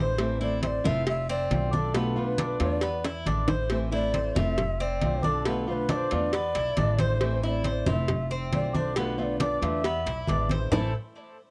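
Nostalgic and warm, this short cut from a longer Latin piece blends Cuban son and guajira in a straight 4/4 feel. An airy, end-blown bamboo shakuhachi carries the melody with vibrato and tongued notes, trailed by tape echo, while a fingerpicked classical nylon-string guitar with fresh strings and audible finger squeak supplies the accompaniment. A metallic Cuban tres picks arpeggios on its doubled strings, set in plate reverb and tape echo, and a woody, thumpy pizzicato upright bass sits up front at the bottom. Low-tuned yet bright congas played with hard hands join tight, high-tuned cowbell and bongos at 0.2 s, and a drum fill breaks in from 3.0 to 3.7 s. The harmony cycles through Am, F6, Bm7b5 and E7 in a small room, and the whole recording carries the worn, warbling pitch drift of old cassette tape.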